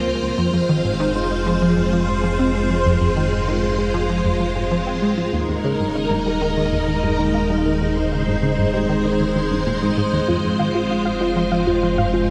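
A lush vintage string machine stands up front with sustained chords, its ensemble chorus coloring an expansive, mysterious piece of ambient, sequencer-driven space music in F minor at 97 BPM, moving from Fm to Ebsus4 and back to Fm. Beneath it a tight, driving sequenced synth riff with detuned sawtooth tone, phaser and delay runs through the passage, while a deep, evolving analog bass sits low and dark. At 10.3 seconds a soft, round pluck adds gentle arpeggios with chorus and delay, all set in a moderate plate reverb in this excerpt from a longer piece.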